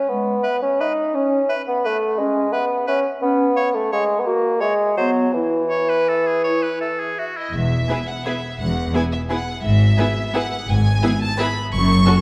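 A lilting 3/4 waltz pulse, pushed and pulled with rubato, carries this sweeping, festive orchestral ballroom piece, cut from a longer work. For the first 7.5 seconds the woodwinds hold the floor: an up-front, vintage-toned bassoon lays down a mellow accompaniment beneath a smooth clarinet, a bright, punchy oboe and a very quiet, airy, hollow flute. At 7.4 seconds the strings take over, with a rich, vibrato-laden violin section singing the melody over a focused second violin line, distant viola with expressive portamento, and a close cello section alongside the double bass section anchoring the bass, all set in a wet concert hall reverb.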